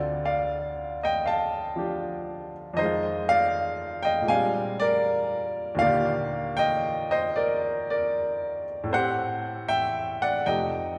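A baby grand piano opens this solo jazz performance on a Dm7 chord, its tone clear and intimate and its action noise audible up front. The mood is warm and playful at 78 BPM in 4/4, with a swung eighth-note feel and rubato phrasing. The harmony moves from Dm7 through Fm7 and Bb13 to an Ebmaj9 at 5.8 seconds, then to Am7 and F9 near the close of these 11 seconds. Spanning D2 to A5, the piano has a natural, short sustain, surrounded by the long, wet reverb of a concert hall or church. The highest frequencies are absent from the recording, with nothing above 10.6 kHz, and the passage is cut from a longer piece.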